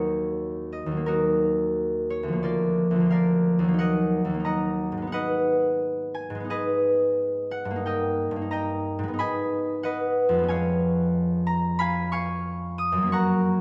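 A bright, ringing concert harp plays alone from the start of this dreamy, graceful classical piece in Eb minor, fingerpicked with a free rubato feel around 90 BPM in 4/4 and tuned to A4 = 439 Hz, its harmony moving from Ebm to Abm at 5.1 s and to C#7/E# at 10.5 s, while the harp sits up front yet is heard from further back in a stone room whose 1.5-second reverb lends a lingering wetness to this short cut from a longer work.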